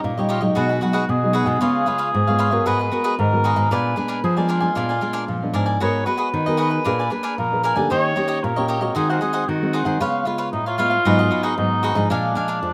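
A mellow, distant cor anglais with light vibrato takes the lead in this bittersweet yet lively samba excerpt at 114 BPM, set over a fingerpicked nylon-string guitar, a dark thumb-plucked nylon-string bass line and a crisp, bright cavaquinho, all wrapped in moderate plate reverb with the rough feel of a home demo as chords such as Abm9 and Bb7b9 pass by.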